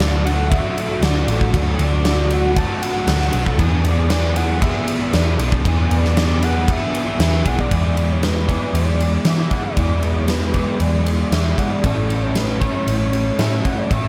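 A crunchy, double-tracked overdriven guitar sits up front, playing a picked riff thickened by ensemble chorus in this dreamy, blissful shoegaze and dream pop cut from a longer piece. It moves at 117 BPM in a straight 4/4 in E mixolydian, over chords of D, E5, E7 and A, with the music shifting into a new section at 7.7 seconds. A breathy, flute-like synth lead carries the melody softly, its sustained, soft-attack tone shaded by chorus and analog delay. Underneath, a hollow-body short-scale electric bass gives a dark, round, amped foundation, while a huge arena drum kit, also up front, drives with a punchy kick, medium-tuned snare and bright ride cymbal in a hall sound. The mix is soaked in moderate plate reverb, giving it a hazy, floating glow.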